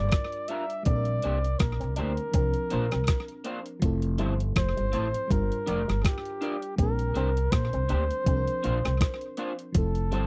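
Romantic and smooth, this lovers rock reggae passage, cut from a longer piece, moves at an easy 81 BPM in F major with a gentle swing on the sixteenths. A breathy flugelhorn carries the melody up front, its jazz-style line colored by vibrato and a tape echo. Underneath, a woody, dark upright bass with gut strings is plucked and thickened by tube saturation, while a gated 80s digital drum machine, overdriven and thumpy, beats out kick, hi-hat and rim click from 0.1 seconds. Further back, a warbling FM electric piano and a twangy, clean guitar through an envelope filter fill in the accompaniment and riff, and from 0.5 seconds a second guitar through a small old amp adds slightly broken-up, lo-fi stabs with analog chorus. The chords cycle through Gm7, Bb69, C9sus4 and Fmaj7, and the close, dry studio sound keeps the whole arrangement intimate.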